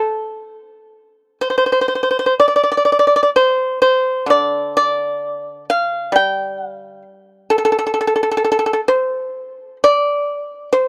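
This is a dry, close recording with a 1970s studio character, a touch of studio reverb around an up-front sound. It is Chinese traditional music for solo plucked strings, a short cut from a longer piece, set in the D yu mode at around 65 BPM in 4/4, though the rubato feel lets the pulse breathe freely. A lone pipa carries the whole recording from 0.0 to 10.9 seconds, played with fingerpicks so each note has a percussive attack over a warm, acoustic body. Its line ranges from D3 up to G5, with the main passage beginning at 0.5 seconds. The tuning sits slightly low, with A4 at 436 Hz, and the mood is one of elegant longing.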